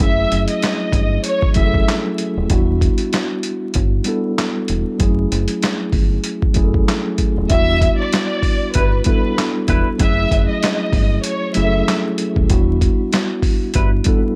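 A gritty, compressed boom-bap drum kit with a thumpy kick, medium-tuned snare, hi-hat and handclaps opens this moody, reflective hip-hop excerpt at 96 BPM in E dorian, alongside a round, dark fingered electric bass, a mellow, clean tine electric piano coloured by cassette tape, and a lush bowed violin section with tape echo that plays briefly, falls away at 1.8 seconds and returns at 7.5 seconds, while a tight, vintage jazz-style horn section adds brief tape-echoed stabs from 8.8 seconds over swung sixteenths, F#m7 and Em7 chords, vinyl crackle and a dry, gritty sound.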